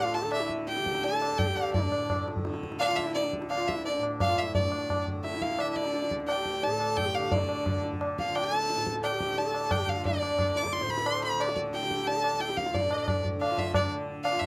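A bright, intense violin carries the melody up front from the start, alongside a dark, nasal sarangi playing a gliding second line with light vibrato and sympathetic strings, over a buzzing, shimmering tanpura drone. High-tuned tabla with a short ring enters at 0.1 seconds, sounding distant in a large room, as this longing, solemn Hindustani piece in raga kafi gradually speeds up. Cut from a longer performance, it is captured with close, detailed microphones and light reverb, which keep the violin's airy bow and the sarangi's intimate, boxy tone vivid.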